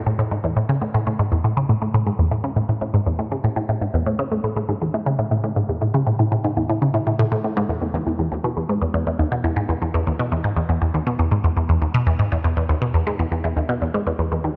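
The rhythm sits in a straight, even 4/4 pulse, carried entirely by a single resonant blip pluck playing alone from 0.1 to 14.5 seconds. This ambient passage, cut from a longer piece, feels expansive and cosmic. The synth voice is a squelchy, detuned sawtooth with a noise layer and ring modulation. Its fast attack and short decay give each note a sharp filter pluck, and it stays in a low register from D#2 to C#3. The sound is bright and up front, colored by a phaser and tape echo. A lush hall reverb with a 2.9-second tail surrounds it, and the tuning sits slightly high, at A4 = 441 Hz.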